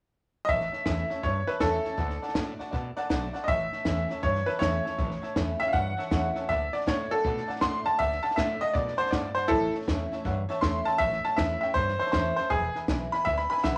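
A bright, slightly detuned upright piano carries the melody up front in this rollicking, retro rockabilly piece, its worn tone and audible action noise giving it an intimate, present feel from 0.4 s. Swinging at 160 BPM in A mixolydian, it is joined by a second, clear and open upright piano, a full-bodied picked steel-string dreadnought guitar in the background, a woody, thumpy pizzicato upright bass with gut strings, and a compact cocktail kit of hi-hat, punchy kick and high-tuned snare with a dark, rolled-off top. The chords move between A, D and E under a wet studio reverb, and the recording is cut from a longer piece.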